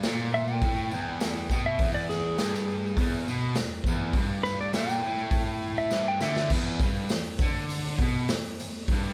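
A twangy, compressed lap steel plays a clean slide solo over a bright, double-tracked fuzz guitar riff, saturated, punchy garage drums and a jingly tambourine in the background in this rowdy, raw garage rock excerpt played live in one room, until a drum fill at 5.9 seconds leads into a new section at 6.5 seconds, where the lap steel stops and an E5 chord arrives.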